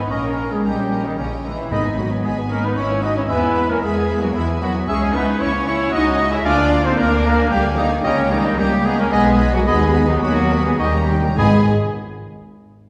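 Set in a triple metre that bends with rubato, this quick classical-period movement for symphony orchestra, cut from a longer piece, feels dramatic and restless. A rich, focused chamber violin section carries the high melody with vibrato, while a sul tasto second violin section, a bright oboe, a dark clarinet and a silvery concert flute weave second lines in the background. A smooth, even viola section fills in the accompaniment, and a very quiet French horn section holds sustained chords as a tight trumpet section punches out stabs. Expressive cellos and a soft-attacked double bass section, the latter sitting up front, anchor the bass. Timpani struck with hard mallets on calf heads enter at 1.7 seconds and return near the close, with a fill at 10.8 seconds leading into the brief final section. A wet scoring-stage reverb places the whole ensemble further back in the room.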